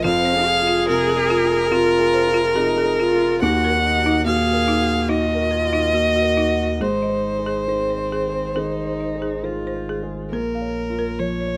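Longing and reflective, this neoclassical passage for piano and strings moves with a rubato feel over Fm, Ebm, Ab and Bbm chords. A single bowed violin carries the melody up front with a rich, vibrato-laden tone, while a solo cello sings an expressive second line with soft attacks, portamento and a slapback echo before falling silent at 10.3 s. Beneath them, a dark, mellow baby grand with long sustain supplies the accompaniment, a woody, rustic marimba struck with hard mallets plays arpeggios in the background with its own slapback echo, and a clean, deep sine sub bass anchors the low end, all captured in a dry outdoor space.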